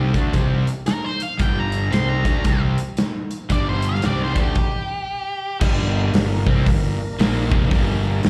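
This is a fragment of gritty, brooding blues rock in the power-trio and southern rock mould, swinging at 114 BPM in 4/4 and centred on G minor. A crunchy, double-tracked overdriven guitar picks out the riff over a G5 chord with a slapback echo. A growly, fuzzed fingered bass sits up front, and a big acoustic rock kit drives the music with crash, hi-hat, punchy kick and a medium-tuned snare, its top rolled off in a large room. From 0.9 seconds, a dark octave-fuzz lead guitar plays a picked melody high above the band. At 4.6 seconds, a stop opens a pause in the groove, and at 5.6 seconds the harmony moves to G minor as a very quiet tonewheel organ enters with full, lightly overdriven sustained chords through a rotary speaker. The sound is that of a live club gig heard through the venue's PA, with a light reverb.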